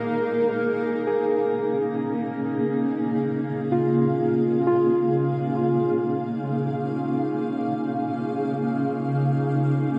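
A granular cloud pad sits up front, holding sustained chords between Bb3 and F5 in a cloudy, blurred wash with a slow attack and long release, its built-in reverb and shimmer reverb giving it a weightless glow. This ambient excerpt drifts in free time in Db major, opening on a Bb7sus4 before settling onto Db6 at 0.8 seconds. Muted, felt-like synth keys play soft, intimate arpeggios between F4 and Bb4, their dark, decaying tone carried by chorus, a diffuse ambient delay and shimmer reverb. At 2.6 seconds a calm, nasal organ-like drone enters on a low Db3, slightly quieter than the other parts and thickened by ensemble chorus and its own built-in reverb. The whole piece floats in a vast, echoing space with a long cathedral reverb tail, creating a warm, suspended mood.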